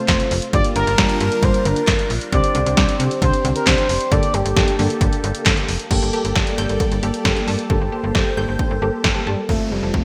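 Bathed in a lush hall reverb with a bright 1980s-style digital sheen, this melancholic, cool synth-pop excerpt sets a smooth, dark sawtooth lead with vibrato over mellow, round electric-piano-like keys, a swirling phased analog pad in the background, very quiet detuned analog pluck arpeggios, a snappy slap-like FM bass with a metallic attack and a punchy, up-front analog drum machine with gated reverb playing kick, snare, handclaps, hi-hat and crash. The lead drops out at 4.8 seconds and returns at 9.3 seconds, and an electronic downlifter sweeps in at 9.5 seconds.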